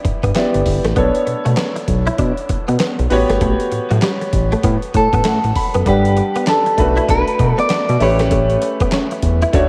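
R&B in a new jack swing vein, this upbeat, flirty clip rides a swung groove built on a gritty, overdriven sampler-style kit with a thumpy kick, snare, hi-hat and handclaps, under a smooth, saturated synth bass sitting up front. A clear concert grand piano supplies the accompaniment and adds a fill at 4.9 seconds, while a direct-recorded clean electric guitar picks a compressed riff with ensemble chorus in the background. At 5.0 seconds a second picked clean electric guitar carries the melody with delay until 8.9 seconds, and the whole mix sits in a dreamy, lingering plate reverb.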